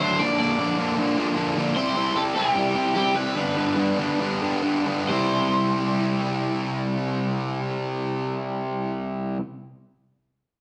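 A double-tracked, compressed fuzz guitar riff sits up front in this carefree, upbeat rock clip alongside a picked, overdriven semi-hollow guitar carrying the melody, both played live in a stone room with a wet reverb as the band slows down between 1.8 and 5.1 seconds.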